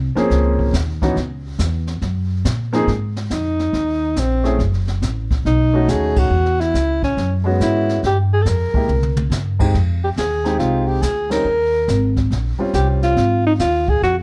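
Relaxed and playful, this small-group swing and bop excerpt moves with a loose swung feel, cut from a longer piece. An up-front upright bass opens the track with woody, dark pizzicato, joined at 0.2 seconds by a natural-sounding baby grand piano comping in its middle register and a brushed drum kit with dark cymbals, a high-tuned snare and a boomy kick. At 3.3 seconds a breathy alto saxophone takes the melody, mellow and smooth at the top with a touch of vibrato, set up front in a plate reverb. The band hits accents together at 6.1 and 11.2 seconds, and a short drum fill lands between them as the harmony drifts through rich extended chords. The overall production is dark and lightly reverberant, with the piano dropping out just before the saxophone, bass and drums carry on to the close.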